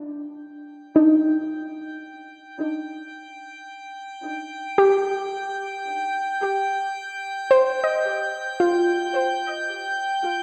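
Spacious and reflective, this short ambient fragment, cut from a longer piece, sits on a single C minor chord at a slow 55 BPM in a straight 4/4. A soft, round synth pluck plays gentle arpeggios between D4 and Eb5 from the opening moment, its dark, fast-attack notes decaying into chorus and a diffuse ambient delay while it gradually fades out across the whole passage. At 1.2 seconds a drifting glass-harmonics texture joins high above, between G5 and G6, its calm, glassy tones swelling in on a slow attack and sustaining with a long release, softened by chorus and its own reverb as it fades in. Both parts sit up front, the texture quieter than the pluck. A wet concert-hall reverb with a 2.3-second decay wraps the sound in a lingering, open space until the close at 10.4 seconds.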